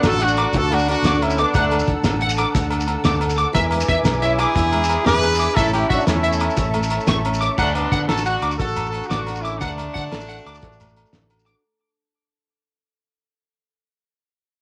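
Highlife guitar band in a sunny, carefree 12/8 at 119 BPM in D major, cut from a longer piece and captured as a home cassette recording that fades out from 7.6 s. Up front, a brilliant, punchy horn section carries the melody through cassette tape and plate reverb, while a clear, close-miked alto saxophone with vibrato plays a second line in the background until 6.7 s and a reedy musette accordion shimmers with sustained chords. A bright, twangy electric guitar at the edge of break-up adds arpeggios through ensemble chorus and tape echo, over a boxy old ladder-braced acoustic guitar, a round fingered electric bass, a muffled, gritty cloth-damped drum kit with a fat snare and dark cymbals, ringing agogo bells and a grainy, distant shekere.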